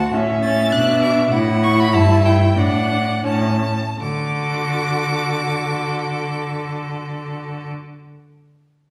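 Heard from further back in a reverberant recital hall, this spirited, lively classical-period string quartet passage in D major moves in a rubato 2/4 at 78-102 BPM and slows between 0.7 and 4.0 seconds, as a rich, vibrato-laden first violin sings the high melody over a smooth, even second violin line and a distant-sounding viola accompaniment, grounded by a clear, up-front cello bass with light vibrato.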